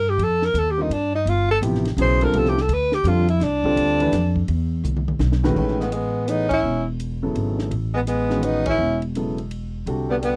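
A breathy, whispered tenor saxophone leads this spiritual, searching modal jazz excerpt in a swung 3/4 at 167 BPM, soloing up front from the opening until 5.6 s over woody pizzicato upright bass, a deep-bassed concert grand piano and a dark, compact cocktail drum kit with a punchy kick and high-tuned snare. A drum fill from 4.8 s carries the music from F9sus4 and G9sus4 chords into A lydian on Amaj9, where a second, roomy tenor saxophone joins at 5.8 s with a low, warm line and the band hits accents. The sound is dry and close, in the manner of a 1970s studio.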